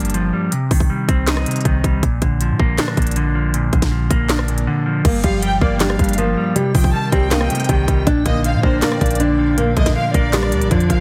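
Menacing and dark, this half-time trap excerpt at 159 BPM rides an up-front drum kit with hard-clipped kick, sharp snare, crisp hats, claps, rim clicks and crash over a boomy sine 808 bass and a clean, low-pass-filtered electric guitar cycling through Gm7, Cm and Bb. At 5.0 seconds, just after a brief drum drop, a full-bodied, fingerpicked nylon-string guitar takes the melody through a filter and delay with audible finger squeak; a lush, vibrato-rich violin section with delay joins at 5.2 seconds, and a blurred granular pad settles in the background at 6.3 seconds. The whole mix has light reverb and a heavily compressed, radio-like sound.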